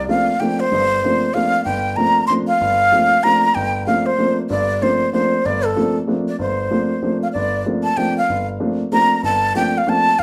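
A moderate large-studio reverb surrounds this live-in-one-room take, a brief cut from a longer cool, searching swing jazz waltz at 190 BPM in 3/4, where a breathy metal flute with vibrato, soft attacks and lifted highs carries the expressive melody up front while a natural-sounding baby grand piano accompanies in its lower range over a suspended C13sus4 harmony.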